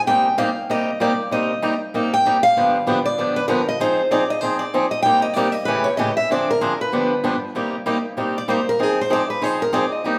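A picked steel-string acoustic guitar carries the melody up front, its fresh strings giving a crisp, concert-ready edge as it moves between Ab4 and G5. Beside it, a boxy, bright swing-style acoustic guitar picks out the accompaniment from G2 to Ab4, with both guitars playing from 0.1 to 10.2 seconds. This brief cut from a longer jazz piece runs at a brisk 192 BPM in 4/4 with a swung eighth-note feel, and its C minor harmony moves through Cm7, G7, Fm7, A7 and Dm7b5 for a bittersweet yet fiery mood. At 7.6 seconds a new section begins and the melody guitar takes a solo over Cm7 and Fm7. The band sounds as if it is playing live in one large studio room, wrapped in a lush reverb.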